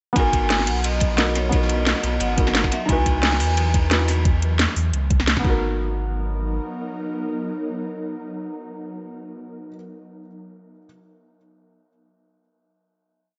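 A felt-muted upright piano opens at 0.1 s with soft, rootless held chords through a delay, and almost at once the drop lands at 176 BPM in G# minor, a rolling, soulful liquid drum and bass groove moving from G#m9 to C#m11 and back. A bright vibraphone struck with hard mallets rings out a free melody with motor vibrato and dub echo until 3.7 s, over a round sine sub bass with long gliding notes, a knocking two-step electronic kick, an up-front garage kit with cracking snare and metallic hats, and a gritty, saturated breakbeat loop with dark cymbals. An ethereal, detuned pad with ensemble chorus and built-in reverb sustains beneath. The breakbeat drops out at 4.2 s, and after a band accent at 5.3 s the remaining drums fall away. The sub bass lingers until 6.6 s as the pad and piano carry the final hit in a small, lightly reverberant room.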